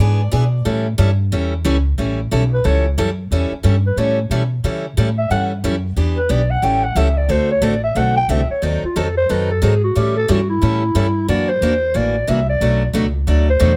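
This acoustic string swing piece in the jazz manouche style, cut from a longer performance, has a playful, charming mood and a lilting swung feel. A full-bodied jumbo steel-string guitar sounds a brief picked line in the background during the opening 0.7 seconds, while a boxy parlour guitar, bright with fresh strings, carries the picked accompaniment up front. Underneath, an upright bass with gut strings gives a woody, dark, thumpy pizzicato foundation that sits prominently in the mix. At 2.5 seconds a growling clarinet enters with a jazz-style solo, mellow yet raspy and gritty, using subtone, scooped notes and light vibrato. Its plate reverb lends it a distant, roomy quality even as it stays up front. The harmony moves through dominant seventh chords, a diminished passing chord and an altered F#7 before settling on Bm7, all captured with close, detailed microphones and light room reverb.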